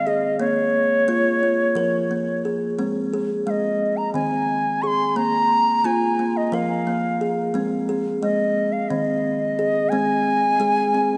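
Moving in a straight 7/8 at 176 BPM counted in eighths, this dreamy, gentle world meditation in Ab major, tuned to A4 = 438 Hz, is an 11.2-second slice of a longer piece that moves through Bbm, Ab, Bb5 and Ab. Up front, a pure, reedy bansuri with close-miked, tongued notes and vibrato carries the melody between Db5 and Db6, while a woody, hollow-box kalimba rings out mellow fingertip arpeggios from Eb3 to Bb4. Both parts carry tape echo inside a deep cathedral reverb with a 4.7-second tail, and the soundstage is rolled off above 10.8 kHz.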